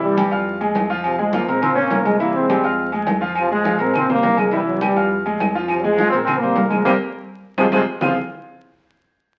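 This driving, fiery salsa fragment opens with a tight, punchy trombone section carrying the melody up front, a clear, polished grand piano accompaniment, a round, amped fingered electric bass in the background, and thin-skinned, damped congas played with hard hands. Ringing timbales and agogo bells come in close at 0.2 seconds, and woody claves join in the background at 3.4 seconds. The harmony cycles through F minor, B-flat and C chords, landing on an F power chord at the end. A band accent hits at 6.9 seconds with a drum fill inside it, and the music then cuts off as the next section begins. The whole recording carries the sound of a very old 78 rpm record, with vinyl crackle and moderate studio reverb.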